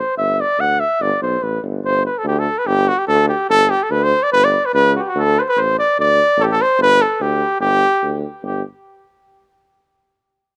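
Wild and festive, this short Balkan folk cut swings lightly in a brisk two-beat metre. An up-front cornet with vibrato and a soft attack carries the melody in a classical style, with a vintage-toned tuba joining on the bass line at 0.2 seconds and playing until the cut ends at 8.6 seconds. Light reverb gives the pair a small-room ambience in a rough, homemade mix.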